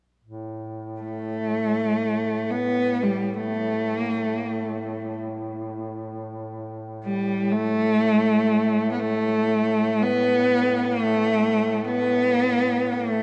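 Caucasian folk lament in free time, solemn and mournful, heard as a short portion cut from a longer piece. A warm duduk sustains a low drone on A2 from 0.2 seconds, its scooped notes, vibrato and soft attacks heard at a distance in a roomy placement. At 1.0 seconds a single bowed cello takes the melody, moving between G3 and B3 with a rich, expressive tone, soft attacks, vibrato and portamento, sitting up front and louder than the drone. Both parts continue together to 13.2 seconds. The production is dark, and a cathedral reverb with a 5.8-second decay surrounds the pair in a deep, resonant space.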